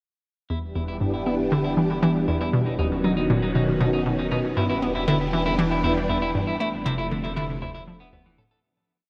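A swirling, vintage string machine sits up front with bright, warbling sustained chords, its ensemble chorus and phaser giving this brief piece of ambient, sequencer-driven space music an expansive, cosmic glow. Beneath it, a hollow, nasal square-wave pluck with chorus and delay runs a bouncy seven-step riff that drifts against the bar, while a clean, picked electric guitar with delay fades in on a three-step arpeggio loop and a deep, round sine sub bass fades in on a sustained root. The mix floats in a huge, wet reverb and fades out from 5.9 seconds to its close at 8.6 seconds.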